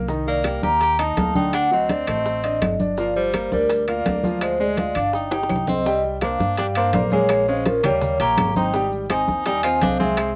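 A baby grand piano with a short, natural sustain and a thumpy pizzicato upright bass open this fiery, driving Afro-Cuban jazz fragment, cut from a longer piece in a straight four. Within moments the percussion fills in: soft-handed congas with a thick skin, tight high-tuned bongos, ringing metal-shelled timbales, woody claves and grainy, vintage-sounding maracas, with the bongos, claves and maracas set in the background. The melody comes from a vibraphone played with soft mallets, mellow and band-limited with a slow motor vibrato. Beneath it, an edgy, close-miked tenor saxophone carries a second line full of scooped notes. A drum fill at 5.3 seconds leads into a new section at 5.9 seconds, where the harmony moves from chords such as Cm9 and Gm7 on to C9sus4, Eb7 and Abmaj7. The piano, vibraphone and saxophone carry a cassette tape coloring, and the home recording has light reverb and studio ambience.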